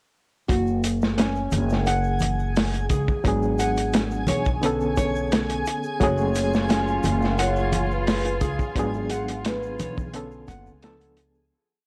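A crunchy, looped breakbeat kit with edits sits up front in this hypnotic, cinematic trip hop piece, its tight kick and medium-tuned snare saturated and gritty with a rolled-off top. Beneath it, a woody, growly pizzicato upright bass plays a dub-style line through tube saturation, while a full-bodied nylon-string guitar fingerpicks a repeating arpeggio sequence through dub echo, and egg shaker and congas with hard hands tick along close and dry in the background. A reversed, granular texture swells dreamily with a bright, detuned tone and a held high note, and at 3.2 s a barky, reedy electric piano enters with tremolo, tape echo and 12-bit sampler grit, holding chords with syncopated pushes. At 6.0 s a pure, breathy sine lead glides through a repeating riff with vibrato, chorus and dub echo, joined by a dark chamber string section bowing a held high note. The chords move through minor and half-diminished colours before settling on a tense altered dominant, and the track fades out from 7.8 s, its cassette-tape recording carrying a small-room ambience.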